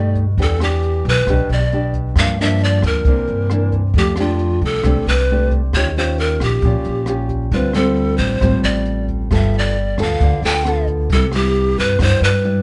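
A dark, warm production with light reverb frames this romantic, sunny bossa nova fragment, cut from a longer piece and moving at 134 BPM in C major through chords such as Em7, F69, Eb9 and a closing Cmaj7. Up front, a breathy bamboo pan flute carries the melody with vibrato, a chiffy crisp attack and a slightly unsteady tone, beside a thumb-plucked classical nylon-string guitar. Beneath them, a woody, growly pizzicato upright bass anchors the low end, while a small-room brush kit adds hi-hat, rim click and a boomy kick.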